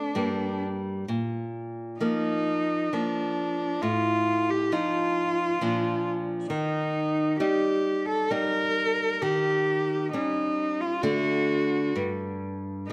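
This romantic duo for cello and classical guitar moves in an unhurried triple metre with a flexible, rubato feel, its mood solemn and melancholic. A single bowed cello carries the melody up front, its tone rich, smooth and even, with vibrato, while a nylon-string guitar plays fingerpicked accompaniment beneath it, sounding bright and small with the sparkle of fresh strings. Both instruments play throughout the 12.9-second fragment, which is cut from a longer piece. The harmony passes from Gm through Bb, F7/A, Eb and Eb7 before settling on D and then breaking off. Close, detailed microphones capture the players in a recital hall whose moderate reverb lingers for about 1.4 seconds, and the tuning sits slightly below standard pitch at A4 = 436 Hz.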